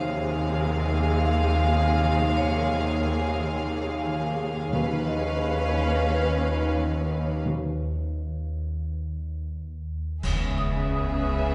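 Drenched in a church-like hall reverb and dark at the top end, this short cut from a longer suspense film score moves at 88 BPM in 4/4 with an ominous, uneasy mood. Muted violin sections carry the melody and a close, lush second line, all veiled and bowed with vibrato, while a rich viola section, a cello section and a double bass section sit in the background underneath. A mellow, fingerpicked concert harp rings out a riff, a bright, metallic vibraphone adds texture, and a very quiet granular cloud pad sustains blurred, evolving chords. A deep, rumbling drone with built-in reverb and phaser lurks low beneath it all. Dry timpani in the background sound at the start and return at 4.7 seconds, a break opens at 7.5 seconds, and at 10.2 seconds dark clash cymbals and concert bass drum land up front in an ensemble accent that begins a new section.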